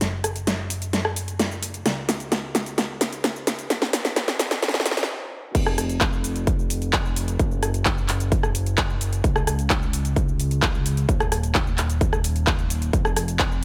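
Powerful and emotional, this festival progressive house excerpt, cut from a longer piece, drives at 130 BPM in a straight 4/4. It opens with a build-up carried by a drum fill from the big-room dance kit, with its huge snare, metallic hats, crash cymbal, handclaps, rim click and shaker, all layered and up front. A brief stop at 5.1 seconds gives way to the drop at 5.5 seconds, where a punchy electronic kick enters alongside the kit. Throughout, a fat analog bass, thick yet mellow, holds the low end with sustained sawtooth and square-wave tones, detuned and shaped by a moving notch, tube saturation and sidechain pumping. The drums sound re-recorded in a small room, and the whole track sits in light reverb behind a high-pass filter.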